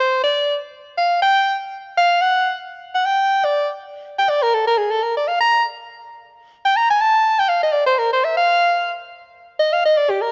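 A warm soprano saxophone carries this short jazz fragment entirely on its own, playing solo from the first moment to the last at 10.3 seconds. Its tone is warm with subtone, shaped by a soft attack, a light vibrato and a smooth top, and it sits up front in the mix. The line stays between G4 and Bb5, moving through two matching passages that turn over at 5.0 seconds. The swung eighth notes give the playing an easy, loping feel, and the mood is smoky and swinging. A moderate, lush hall reverb surrounds the horn, while the cassette tape adds a homespun, slightly worn character to this home recording cut from a longer piece.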